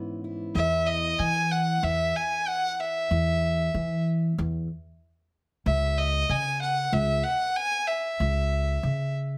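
A large studio room gives this short cut from a longer indie folk piece a moderate reverb, with the fiddle and upright bass placed up front. The mood is anthemic and uplifting, in a straight 4/4 feel, and the arrangement is a building one. A dark, fingerpicked steel-string acoustic guitar opens the track at 0.0 seconds over a C#m7 chord, its finger squeak audible, before it falls away at 3.1 seconds. A single bowed fiddle enters at 0.6 seconds to carry the melody between D#5 and G#5, smooth and even with a light vibrato and a warm tone set in plate reverb. Alongside it, a woody pizzicato upright bass supplies the low end, and the harmony settles on C#m before the fiddle and bass close out the passage.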